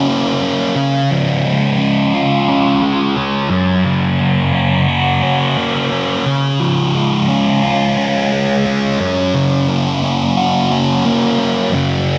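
At a steady 88 BPM in a straight 4/4, this rock excerpt in F# major sets a kaleidoscopic, hypnotic mood with a lone fuzz guitar carrying everything from 0.0 to 12.2 seconds. The thick, double-tracked electric guitar sits up front, its picked tone warm and distorted, spanning F#2 to F#4 as it moves between F# and C# chords, colored by phaser and analog delay. Light reverb and an echo-heavy mix wrap the guitar in a trailing, repeating haze.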